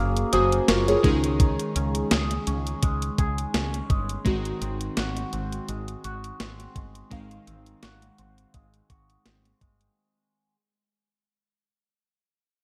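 Glassy, airy digital keys with chorus, a bright, twangy envelope-filtered electric guitar riff touched by digital delay, and a dark, round fretless bass with lush chorus open this romantic, glossy fade-out from a 1980s-style pop piece, joined at 0.2 seconds by an up-front, thumpy 12-bit drum machine of kick, snare and hi-hat in gated reverb, all set in a plate-reverb space with bright digital production as the harmony moves from Gbadd9 to Dbsus2 and on to Ab7.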